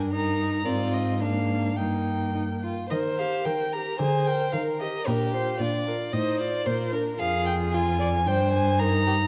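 A rich, vibrato-laden first violin carries the melody up front in this graceful, cheerful quick classical-period movement for string quartet in Eb major at 112 BPM in 2/4, alongside a second violin with a soft attack and an airy, intimate bow, a warm, even viola accompaniment, and a smooth cello bass line also sitting forward, all bathed in a recital hall's reverb and heard through worn, warbling cassette tape with drifting pitch in this brief cut from a longer piece.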